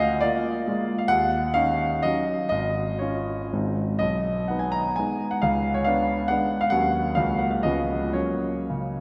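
Classical romantic piano in a graceful, rustic triple-time dance with dotted rhythms, played solo on a warm grand piano that sits up front with a natural tone, moving between 108 and 144 BPM with free rubato. It opens in Db major and shifts to F# major at 4.0 seconds, closing on an F# chord. The whole nine seconds, cut from a longer piece, is bathed in a wet church reverb with a long tail.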